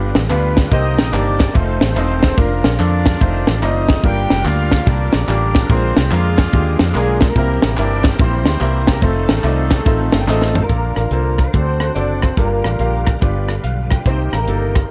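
A tight funk drum kit sits up front in this jubilant, hopeful stretch of uptempo gospel, its high-tuned snare and tight kick snapping through a small acoustic room at 144 BPM in a swung 4/4 in Bb major. A fingered electric bass, foam-muted and amped, rides just as close, while a brilliant, woody upright piano comps through chords like Gm7, Bb7 and F7, with a tonewheel organ holding very quiet, shouting sustained chords through a rotary speaker with key click and chorus vibrato. A mellow horn section carries the melody in octaves from a distant, roomy spot with light vibrato, and tambourine and handclaps add a live-room shimmer. The piano plays a fill starting at 9.9 seconds, joined by a drum fill at 10.3 seconds, when a clean, dark electric guitar also joins the melody in the background with an ensemble chorus, and the tambourine and handclaps drop out at 10.6 seconds as the harmony moves to Bbmaj7. 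Light studio reverb and a dusky, rounded production frame this fragment of a longer piece.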